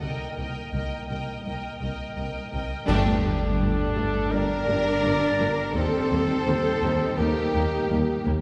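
Warm French horns hold sustained chords over lush bowed violins, violas, cellos and double basses in this heroic, epic orchestral film-score excerpt in G minor at 84 BPM, where at 2.9 seconds a band accent brings in a clear solo trumpet with soft-attack stabs, a mellow tuba bass, distant studio strings, bright clash cymbals with concert bass drum and very quiet hard-mallet timpani, all set back in a wet concert hall moving from Cm7 through Gmadd9 to Eb.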